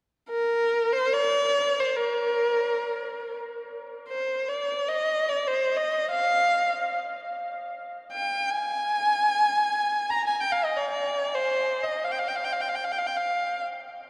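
A single bowed kamancheh, rich and focused with vibrato and portamento, sits up front from 0.3 s, carrying a melancholic, longing Persian melody in free time between Bb4 and Bb5 within the long, wet cathedral reverb of a church or concert hall, in this fragment cut from a longer piece.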